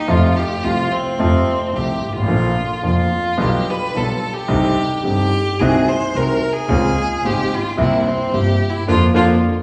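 A bowed violin opens this melancholic, tense tango at 0.0 seconds, its vibrato tone smooth and even as it carries a solo line through the whole passage. A concert grand piano and a double bass enter almost at once, the piano up front with a warm, natural sound and deep bass, and the bowed double bass focused and close, its rich vibrato anchoring the low end. The feel is rubato around 109 BPM in 4/4, in Bb major, with the harmony drifting from F and Bb through G7/B, Cmadd9, Ab7/C and Dbmaj7 before C7 settles on Bb/F. Near the close, at 8.9 seconds, the ensemble lands a shared accent. A reverberant recital-hall ambience surrounds the trio, giving it the air of a church or concert hall in this brief cut from a longer piece.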